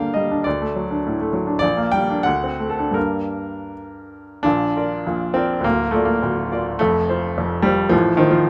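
A bright, woody upright piano plays alone in this stormy, brooding romantic character piece for solo piano, cut from a longer work. It moves in a rubato 2/4 between 76 and 108 BPM, tuned to A4 = 438 Hz and spanning D1 to G5. It opens in G minor over D, Gm/Bb, D7 and Gm chords, then turns to Bb major at 4.4 s through Bb, Bb/D, F and F/A until it breaks off at 8.5 s. The polished, short-sustained piano tone sits up front, captured by close, detailed microphones in light reverb.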